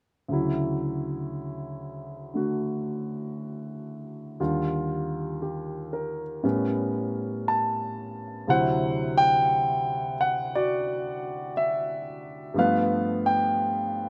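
A slow, swinging 4/4 lilt carries this sophisticated solo jazz excerpt, where an intimate, up-front concert grand with deep bass and audible action noise glides through rich ninth chords, taking on a bluesier color at 8.5 s, its tone touched by slapback echo and light reverb in an open-air setting.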